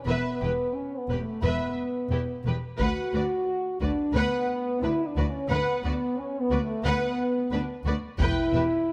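An epic orchestral film-score fragment, dramatic and relentless in a straight 4/4, opens on a mellow, up-front French horn section holding sustained chords, while a distant, lush violin section carries the melody over a soft-attack second violin line, a focused viola accompaniment and a bass of background cellos and expressive double basses, before a taiko ensemble with heavy sticks enters at 2.8 seconds, all set in a moderate scoring-stage reverb captured by close, detailed microphones.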